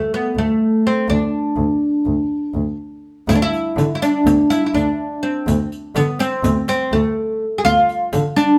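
A fretless oud carries the melody of this soulful, longing excerpt of Turkish makam ensemble music, plucked with a plectrum so its double strings ring out woody and deep, sitting up front. The piece moves in 9/8 with a straight feel at 247 eighth-note beats per minute, set in D makam nikriz. A single bowed double bass enters at 0.4 seconds beneath the oud, played sul tasto with a soft attack that gives it a pure, floating tone, close in the mix yet somehow distant in character. At 3.3 seconds a riq joins, its dark jingles struck with hard hands and sounding close and dry, lower in the balance than the strings. The trio plays live together in one room, wrapped in a moderate studio reverb, until the oud's final note at 8.6 seconds.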